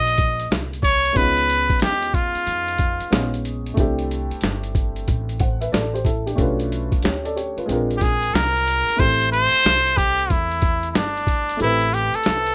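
Jazz-hop with a mellow, smoky mood, this short cut from a longer piece sways at 92 BPM with a swung sixteenth-note feel over rich, jazzy chords. A nasal, straight-muted trumpet sits up front with the melody, pausing at 3.4 seconds and returning at 8.0 seconds. Beneath it, a dark, slightly detuned upright piano with audible action noise and a woody pizzicato upright bass carry the harmony, while a gritty, pitched-down boom bap kit with a thumpy kick and 12-bit sampler crunch drives the groove until the kick drops out at 11.6 seconds, all in a small room on a rough home-demo mix.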